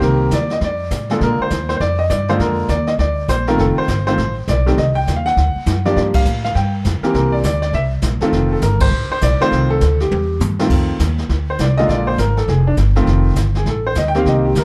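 Jazz piano trio at a brisk swing, playful and relaxed, in a short cut from a longer piece heard in a moderate club room with a dark production. A clear, intimate baby grand carries the melody with audible action noise and a touch of plate reverb, over a woody, thumpy pizzicato upright bass up front and a distant, roomy brush kit with dark cymbals and a boomy kick. The band hits accents at 6.1 and 8.8 seconds, and after a drum fill the piano takes a solo from 10.7 seconds.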